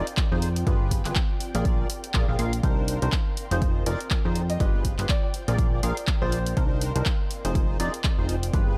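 Soulful and energetic, this piano house cut from a longer piece moves at 122 BPM in 4/4 with a 16th-note swing, cycling through Fm7, G7b9, Bb7 and Cm9 under a dark, dry production. An up-front overdriven kick and a punchy, overdriven analog drum machine with handclaps and hi-hat drive beneath a plucky, funky sawtooth bass and a hollow, percussive organ stab riff carrying chorus and delay, both pumping with sidechain, while an ethereal, detuned pad, also pumping, drifts in the background. From 3.9 to 6.6 seconds a clear, smooth concert grand piano adds a brief melody touched with digital delay.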